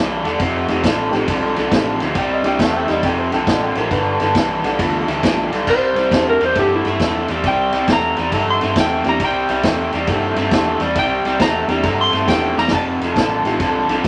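An electric blues shuffle at 136 BPM in 4/4 with a swung eighth-note feel, this gritty, swaggering cut sits in C mixolydian and is taken from a longer piece. A bright, overdriven garage guitar drives the riff up front from the start, while a reedy, clean electric piano comps in the background and a round, punchy, foam-muted bass holds down the low end. The vintage drum kit enters at 0.2 seconds with a tight kick, medium-tuned snare, ride and crash, its sound saturated and mid-forward with dark cymbals and a rolled-off top. At 5.7 seconds an electric slide guitar enters with the melody for a solo, its tone compressed and slightly broken-up, and a drum fill at 12.5 seconds leads into an F chord. The harmony moves through F7, C7, F and G7 under moderate studio reverb.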